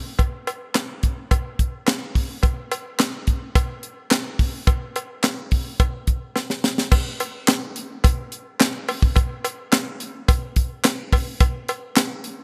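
A straight 4/4 funk groove at 107 BPM drives this slick, funky excerpt, carried by a tight drum kit of kick, high-tuned snare, hi-hat, handclaps and crash cymbal, dry and polished with bright cymbals and sitting up front. A metallic cowbell, close and dry, sits lower in the mix alongside the kit from 0.2 seconds, and a drum fill at 6.4 seconds leads into a new section at 6.9 seconds. The bright 1980s-style digital production adds light reverb and a small room ambience.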